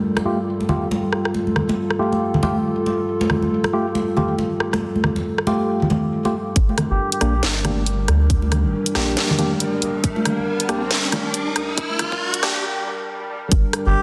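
Deep dubstep in G minor at 138 BPM with a swung half-time feel, heavy and meditative, this excerpt opens on a moody, detuned analog pad with chorus and 12-bit grit, a garage kit with a cracking high-passed snare and high-passed hats, ringing high-tuned congas, and hollow organ stabs (the congas and stabs trailing dub echo), before a round triangle-and-square sub bass and a tight, up-front kick arrive at 6.6 seconds to launch a filter-swept build-up where a reedy, breathy melodica briefly sounds its lone G4, an electronic riser and swell appear, and a break lands at 12.6 seconds, set in a lush hall reverb within a dense, heavily limited master.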